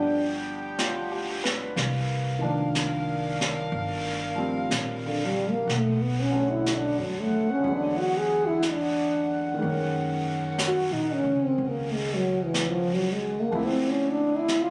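A dark, breathy trombone carries the melody up front with scooped notes, over an intimate grand piano whose action noise can be heard, a softly voiced saxophone section holding chords with light vibrato, and a woody, thumpy pizzicato upright bass. A brushed drum kit with a high-tuned snare and a rolled-off top enters at 0.8 seconds, settling this late-night, tender jazz ballad into a slow 61 BPM swing in 4/4. Captured on a phone in a club with a touch of its reverb, the trombone solo drifts through changes such as Cm11, E9 and Gb6 in this cut from a longer piece.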